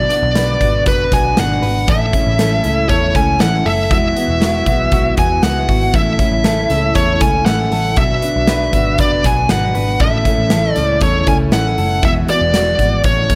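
A big rock drum kit drives a straight 4/4 groove at 118 BPM from 0.1 s, with a boomy kick, a medium-tuned snare and hi-hat ringing in a big room, while a dark, round, foam-muted electric bass adds punchy, amped low notes underneath. This is breezy, nostalgic jangly indie pop in A major, cut from a longer piece, cycling through Bm, A, Eadd9 and A. Up front, a smooth overdriven lead guitar carries the picked melody, sitting as the most prominent part in the mix. Behind it, a full-bodied dreadnought acoustic guitar picks out the accompaniment and a clean, compressed, direct-recorded electric guitar plays arpeggios, both tucked into the background. A very quiet vintage analog pad of detuned sawtooth and triangle tones holds sustained chords with a soft attack, long release and a warbling chorus, and light studio reverb surrounds the whole track.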